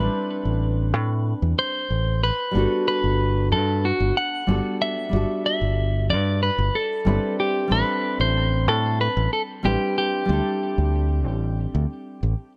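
Sunny and relaxed, this short fragment of a sunset chillout piece moves in an unhurried, straight 4/4 feel. A clean electric guitar carries the melody up front, its picked, compressed tone colored by a vintage 12-bit sampler grit and trailed by delay. Beneath it, a nylon-string guitar fingerpicks a dark, full-bodied accompaniment with a deep classical character, treated with tape echo, and a hint of finger squeak adds intimacy. A fingered electric bass sits warm and direct in the low register, anchoring the harmony as it cycles through Am11, Gmaj9, back to Am11 and onto a suspended D7sus4. Light reverb and small room ambience keep the whole performance close and cozy, with all three parts sounding together from the start until just past 12 seconds.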